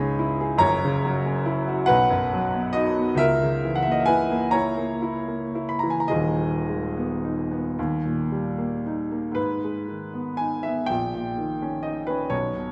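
A rubato 6/8 lilt sets the pace of this mournful, yearning romantic nocturne, a short cut from a longer classical piece for solo grand piano. The piano sounds smooth and vintage, sitting up front and reaching from deep bass notes into the upper treble, wrapped in a lush concert hall reverb. Its opening passage of minor-leaning harmonies gives way to a new section at 9.4 seconds that returns to the home minor chord before leaning toward its dominant.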